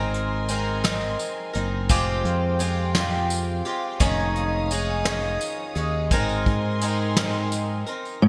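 Hopeful and warm, this short indie folk excerpt sways in 6/8 over Abadd9, Fmadd9 and Dbadd9/F chords. A shimmering, octave-doubled twelve-string acoustic guitar with audible finger squeak sits up front with a fingered electric bass, and a soft brush drum kit adds a fat snare and punchy kick under gated reverb, while bowed chamber strings hold sustained sul tasto chords with light vibrato in the background and a jingly tambourine joins from 0.5 s. At 8.2 s a fingerpicked steel-string acoustic guitar enters briefly with an ensemble chorus, and the mix has small-room ambience and a bright 1980s-style digital sheen.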